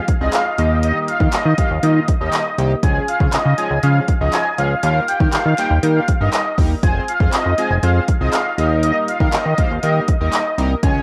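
Dance-pop at 120 BPM in a confident, driving straight 4/4, this short cut from a longer piece rides a Fm, Eb and Db progression, with a punchy-kicked deep house drum kit of handclaps, dark hats and kick sitting up front beside a glossy, nasal chorused synth bass whose pulse-width and sawtooth tones carry a filter pluck and moving notch under sidechain pumping. A chorused polysynth with detuned sawtooth, sub octave and ring-modulated color fills in the chords from 0.0 s with a filter sweep and cassette tape grit. An airy, evolving filtered supersaw swell with a noise layer and tape echo carries the high melody from 0.2 s, while a hollow, distant group handclap from a large room sits very quietly beneath the dry, home-cassette sound.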